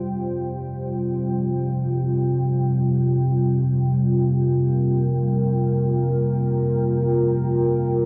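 Dark ambient drone in free time, desolate and cavernous, this short excerpt is cut from a longer piece and holds on a single Fsus2 chord for its 8.1 seconds. A deep rumbling drone sits low and up front, its ominous triangle and sawtooth tone rising from a slow attack and held with a long release in its own built-in reverb. Above it, a deep dark ambient pad sustains moody, full-bodied chords, its detuned sawtooth unison, sine layer and sub octave thickened by chorus and reverb. Both parts fade in together from 0.0 seconds and sound through to 8.1 seconds. The whole recording is bathed in a wet cathedral reverb and passes through worn old cassette tape, whose warbly pitch drift gives the sustained tones a wavering, decayed quality.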